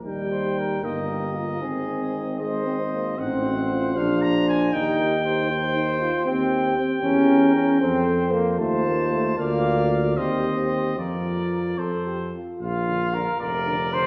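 A flexible, rubato 6/8 lilt carries this noble, triumphant brass quintet passage, cut from a longer piece. The bright trumpet sings the melody over a warm, lightly vibrato flugelhorn second line, while a mellow French horn sits in the background and a dark, smooth-topped trombone, the strongest voice, shares the accompaniment. The tuba anchors the bass up front, and the whole group is heard from further back in a reverberant recital hall as the harmony moves toward a new key at 6.3 seconds.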